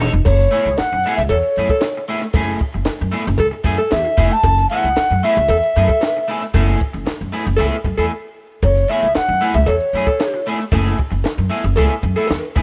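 A reedy, chiffy alto ocarina carries the melody from 0.2 s to 10.5 s in this cool, funky 115 BPM piece in F# minor, shaped by a breathy, whispered tenor saxophone second line with scooped notes and slapback echo entering at 1.3 s, a twangy, slightly broken-up electric guitar with subtle chorus comping on F#m9, a woody pizzicato upright bass up front, a dark compact cocktail drum kit with a high-tuned snare and punchy kick, and a dry metallic cowbell in the background, all captured as a rough home demo in a small room, with a brief break at 8.1 s.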